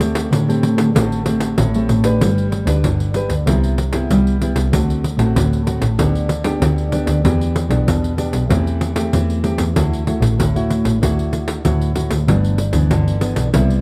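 A bowed double bass anchors this festive, playful samba-choro fragment, its dark, soft-attacked tone sliding between notes with vibrato and an expressive single-player voice held close up front. Alongside it, a thumb-plucked nylon-string guitar adds warm classical accompaniment through shifting harmonies that settle on G6 at 12.3 seconds, while a jingly pandeiro keeps a straight 4/4 pulse from a small room. The whole 13.8-second cut carries the dry, close intimacy of a 1970s-style studio.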